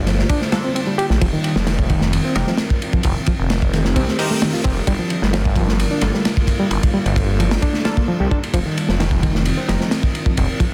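A crunchy breakbeat drum kit sits up front in this funky, raw breaks excerpt at 131 BPM, its gritty, saturated acoustic sound carrying dark cymbals, a medium-tuned snare and a tight kick, with a rolled-off top. Alongside it, a thick, swirling detuned saw bass with a phaser holds the low end from F1 to C2, also placed up front. A reedy, clean electric piano plays a riff through fast tremolo and delay, while a muted, deep dub chord stab with lush chorus and delay enters at 0.5 seconds and sits in the background. Beneath it all, a warbling, nostalgic lo-fi pad sustains chords with chorus, built-in reverb and sidechain pumping. The harmony moves between Gm7 and F9sus4 in a small room, finished with a dense, heavily limited modern master.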